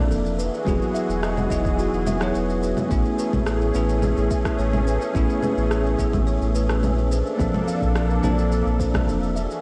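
Sunset chillout with a warm, sunny mood, built on a bell-like tine electric piano with delay, a lush, detuned unison pad with chorus, and a round, up-front sub bass, while a buzzing, woody kalimba plays delayed arpeggios over a very quiet, breathy wind-like tuned noise texture. An electronic shaker, congas and rim click come in at 0.1 s, and a deep electronic kick enters in the background at 0.7 s, both with a tape-warm, small-room character. The harmony moves from Emaj9 through Amaj9 to Bbmaj9 in this cut from a longer piece, with the mix set in a moderate digital room reverb and colored by the worn, warbling pitch drift of old cassette tape.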